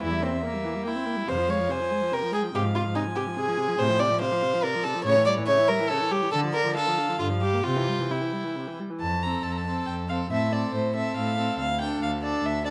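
A string quartet opens together at 0.0 s on a C7/E chord that settles into F minor. The movement is quick and graceful in 3/4 at 141 BPM, played with a rubato feel and a cheerful mood, and it moves into F major from 3.8 s. Each of the four bowed, single players has a gut-string, reedy period-style tone. The first violin carries the melody high up with a rich sound and light vibrato, while the second violin's airy, nasal line sits close and up front, louder than the tune it supports. The viola fills in a warm accompaniment beneath, and a distant, nasal cello anchors the bass as the harmony moves through A7, D minor and G minor 7 toward a new section at 9.0 s. The close, detailed microphones catch the strings within a moderate recital-hall reverb in this brief passage cut from a longer piece.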